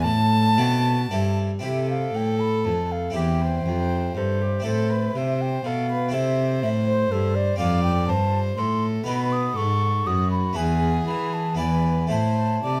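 A baroque flute carries the melody with an airy, woody tone, vibrato and crisp attacks, in this radiant, flowing classical passage cut from a longer baroque-style sonata movement with continuo. Beneath it, a single violin plays a second line with a nasal, reedy gut-string sound and an airy bow, while a dark cello, the most forward voice in the mix, holds the bass with a smooth top. A full, French-style harpsichord with two sets of strings fills out the accompaniment with its plucked sound. All four parts play throughout the 12.8 seconds, moving in 3/4 at about 110-124 BPM with a supple rubato. The harmony travels from A minor through C, F and B7 to E and E7 before settling back on A minor. Close, detailed microphones and light reverb keep the period-style playing intimate and clear.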